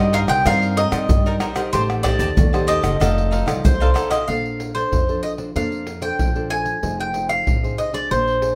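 A round, up-front mandolin carries the melody through this festive, sunny fragment of samba and choro, its picked double strings ringing across the whole 8.6 seconds at 94 BPM in straight 4/4. Beneath it, a fingerpicked nylon-string guitar adds classical warmth, while a bright, crisp cavaquinho adds picked accompaniment until it drops out at 4.3 s. That is also where the music settles into Bb major. The harmony moves from Cm9 through Am7b5 and F6 to Bbmaj9 and Fm7. A woody upright bass played pizzicato on steel strings anchors the low end. From 0.1 s, a percussion group of pandeiro, tube shaker, tamborim and a deep surdo, struck with hard hands in a live room, drives the sunny groove. Close, detailed microphones and light reverb keep the acoustic playing intimate and clear.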